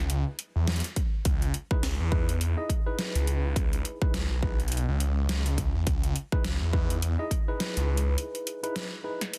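On a swung 104 BPM groove in 4/4, this playful, funky glitch hop excerpt in C# minor sets a thick, swirling phased saw bass up front from the start, joined by an overdriven dubstep kit with a deep snare and metallic hats, a punchy overdriven kick entering at 1.0 seconds, and bright, clean tine electric piano stabs pumping with tape echo over a C#m7 chord before the bass drops out for a break at 8.2 seconds, all in a dense, heavily limited modern mix.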